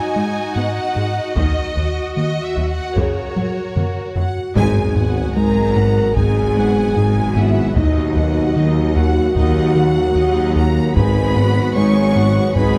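A straight 4/4 pulse at 75 BPM carries this vast, tense hybrid orchestral and electronic film cue in G# minor, cut from a longer piece, where two bowed violin sections with lush vibrato carry a melody and a second line over background violas and cellos and a rubbery, hollow square-wave bass riff, hard-stick taiko drums join at 1.4 seconds and play a fill, mellow close-miked French horns enter at 4.2 seconds, and from 4.6 seconds very quiet bright trombones add sustained chords while distant double basses and a background tuba add low weight as a band accent and an impact land, an electronic sub drop sounds beneath, and the players sit in a moderate concert hall reverb.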